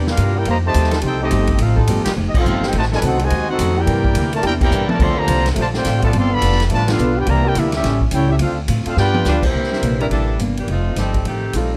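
A swinging 4/4 pulse at 212 BPM drives this joyful, energetic big band excerpt in C major, where a clear trumpet section carries the melody over a second line from the trombones, sustained chords from a bright, close-miked trombone section in the background, a very quiet, boxy parlour acoustic guitar, a woody, thumpy upright bass up front and a roomy, distant drum kit with a boomy kick, before a smooth-topped saxophone section takes over the melody at 9.3 seconds and a warm baby grand piano joins at 9.7 seconds, all under light reverb.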